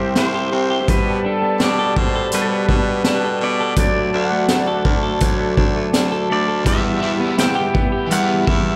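Over a straight 83 BPM pulse in 4/4, a raw garage drum kit with a boomy kick, high-tuned snare and gritty, saturated, up-front sound plays from 0.2 to 8.6 seconds beneath an ethereal, melancholic dream pop passage cut from a longer piece, moving through C, Gadd9/B, D and Em. An edgy, forceful baritone saxophone with vibrato carries the bass line, while a dark, clean semi-hollow electric guitar plays fingered arpeggios with subtle chorus and analog delay, and a smooth, warbling vintage pad holds sustained chords in the background. A brilliant, twangy pedal steel guitar with fingerpicks, slide and volume swells sings the melody through analog delay, and a crunchy overdriven guitar joins at 6.6 seconds with harmonic tremolo, ensemble chorus and delay, all set in a small room with light reverb and an echo-heavy mix.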